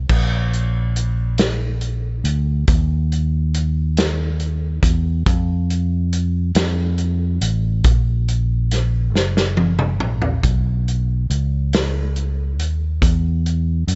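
Slow, uplifting and jubilant gospel at 46 BPM in 6/8, in which a round, amped fingered electric bass sits up front alongside a roomy acoustic country drum kit with a punchy kick, medium-tuned snare, crash, hi-hat and toms; a drum fill from 9.1 seconds leads into a lift from Bb major to B major at 10.4 seconds, all captured dry with a softened top end in this short excerpt.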